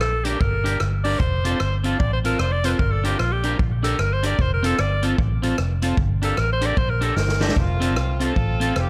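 An edgy, forceful alto saxophone leads this joyful, bouncy ska clip, its up-front solo carrying a touch of vibrato and a tape echo until the horn section takes over at 7.4 seconds. Underneath, a vintage foam-muted fingered electric bass sits dark and round near the front, while a swinging big-band drum kit of hi-hat, punchy kick, rim click and medium-tuned snare sounds distant and roomy, adding a fill just before the shift to a new section at 7.6 seconds. An electric guitar at the edge of break-up supplies twangy, slightly broken-up accompaniment, also touched with tape echo. The clear horn section then picks up the melody as a distant, vibrato-laden ensemble with its own tape echo, over chords moving between G minor and F. The swung rhythm gives the whole clip a lively, dancing lilt, and studio reverb lends the sound a sense of space.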